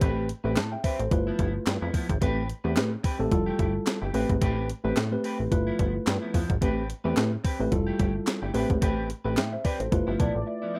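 This rough home demo mix is dry, with little reverb, and it catches a short stretch of early-eighties boogie funk with a danceable, late-night mood and a light sixteenth-note swing. A clean 12-bit drum machine sits up front with a thumpy kick, a medium-tuned snare, handclaps and hi-hat, its sampler-style hits carrying the air of a large room. Beneath it, a plucky analog bass with a punchy, ring-modulated snap plays a funky line, while a clean, picked electric guitar riff shimmers through analog chorus. A worn, slightly out-of-tune tine electric piano comps mellow voicings over a looping Am9, G13 and Fmaj9 progression, then adds a fill from 9.9 seconds. At 10.2 seconds a velvety, detuned synth lead slips in with vibrato, chorus and slapback echo, just before a break at 10.5 seconds.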